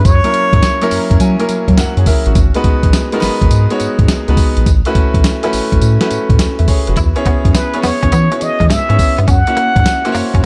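A swung 16th-note groove at 104 BPM in 4/4 drives this bouncy, slick new jack swing R&B excerpt, built on a gritty, tape-warm sampler-style drum kit with a thumpy kick, medium-tuned snare, hi-hat and tambourine, over a deep, round analog bass. A clear, open baby grand piano accompanies over F#7, G#m7, A69 and E6 chords and adds an early fill, while a plunger-muted trumpet plays scooped, jazz-style solo lines with a soft-attacked wah-wah tone, briefly at the start and again from 7.6 seconds. A twangy, clean electric guitar riff with ensemble chorus joins at 7.0 seconds, and the overall sound is dry, with little reverb.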